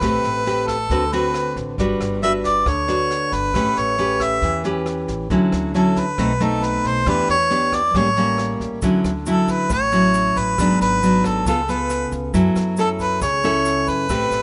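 Through a rough home-demo mix with light reverb and a dulled top end, this sunny, sophisticated bossa nova excerpt puts a smooth, jazz-style harmonica melody up front beside a full-bodied, fingerpicked nylon-string guitar with audible finger squeak, over a woody, growly pizzicato upright bass and an airy, polished brush kit with a boomy kick, high-tuned snare and rim clicks, while a grainy tube shaker slips into the background at 8.8 seconds.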